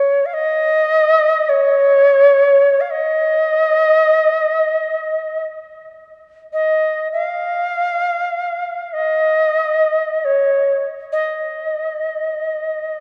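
A spacious, haunting excerpt of free-time world meditation music, featuring a solo Native American-style cedar flute whose pure, woody tone, with chiff, tongued notes and expressive vibrato, hovers between Db5 and F5 for 13.0 seconds, sitting up front yet sounding distant in a wet church reverb with a 3.8-second decay and softened highs.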